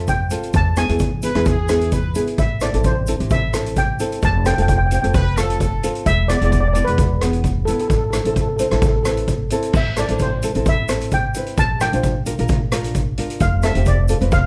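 A mellow, shimmering steel pan carries the melody over dark, thumb-plucked nylon-string guitar and woody pizzicato upright bass from the opening of this intense, driving calypso excerpt in A minor at 131 BPM, joined by an up-front street-band drum kit with a boomy kick and a grainy tube shaker in the background, while a clear horn section with vibrato adds a brief second line at 1.2 and 5.1 seconds, in a close, detailed recording with little reverb.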